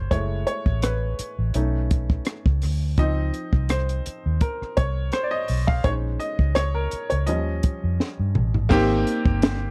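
A clear, natural baby grand piano leads this short clip of lush 1970s-style soul, taking a solo from the very start until 8.7 seconds with a clear, short-sustained tone placed up front. Beneath it, a vintage foam-muted fingered electric bass supplies a round, amped low end, while a compact cocktail drum kit, recorded with a small-room feel, keeps a gently swung 4/4 groove using kick, snare, hi-hat, rim click, toms and crash cymbal. The kit stands out for its high-tuned snare and punchy kick, with a smooth, dark character overall, and a drum fill arrives at 8.0 seconds. The harmony drifts through rich extended chords such as Gbm7, B9, Dbmaj9 and Bbm11 before settling on Abmaj7 at 8.7 seconds. The dry, close studio sound with little reverb gives the smooth, lush mood an intimate, in-the-room quality, and the passage is clearly cut from a longer piece.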